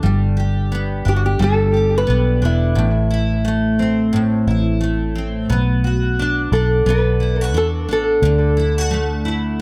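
Sunny and heartfelt, this acoustic pop passage moves at 88 BPM in a lightly swung 4/4 in G major, drifting from G through Am and Bm7 to Dadd9. A full-bodied, double-tracked dreadnought steel-string guitar picks the accompaniment up front, beside a dark, round, punchy vintage electric bass with a foam-muted, amped tone. A small fingerpicked nylon-string guitar carries the melody from 1.1 to 8.5 seconds through tape echo, all set in a small room with moderate spring reverb and an echo-heavy mix in this brief cut from a longer piece.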